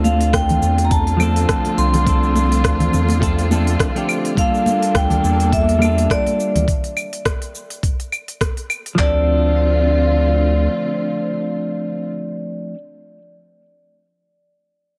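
Relaxed and smooth, this sunset chillout passage, cut from a longer piece, rides a swung sixteenth-note feel in 4/4. A vibraphone struck with medium hard mallets carries the melody, its metallic, ringing tone close-miked with the motor off and trailed by digital delay, while a clean, fingered electric guitar with its own delay supplies the accompaniment. Underneath, a muted string section bowed con sordino holds veiled, dark sustained chords, and a round analog bass sits up front with a deep, sine-like tone until 10.7 s. Two drum kits share the groove: a compressed, sampler-style kit with a thumpy kick and gritty handclaps, and a crisp, overdriven electronic kit of hi-hat, rim click, cabasa and claves, joined in the background by bright, dry congas. The harmony moves from Dm7 to Gm9/D, gives way to a chord-free stretch at 6.7 s, and returns to Dm7 at 9.0 s, set in light reverb and digital ambience.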